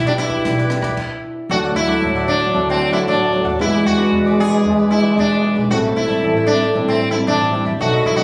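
Nostalgic and bittersweet, this fragment of samba and choro at 114 BPM puts a buzzing, shimmering sitar melody up front over crisp picked cavaquinho, fingerpicked nylon-string guitar with old strings, and thumpy pizzicato upright bass, while a dry compact cocktail drum kit with dark cymbals plays only until 1.1 s before a brief stop, after which a breathy, intimate trombone with vibrato and scooped notes carries a second line from 1.5 s, the whole sound set in a moderate large studio reverb with the compressed character of a phone in the room.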